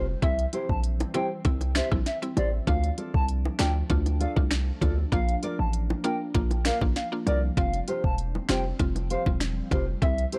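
A dry, gritty recording with little reverb carries this bouncy, tough dancehall excerpt at 98 BPM in straight 4/4, moving through C, Dm, Bb and Fsus2. Up front, an electronic afro-pop kit with a knocking kick, sharp snare, smooth hats, rim clicks and finger snaps sits over a punchy, heavy 808-style bass, while a dark, thumb-plucked nylon-string guitar arpeggiates with audible finger squeak and a woody, bright mallet-like synth pluck adds chorused accompaniment. A hollow, mellow clarinet-like synth lead sings the melody with vibrato, chorus and analog delay, as a glassy, ethereal FM pad pumps softly in the background beside round, low-tuned bongos that enter at 1.0 seconds.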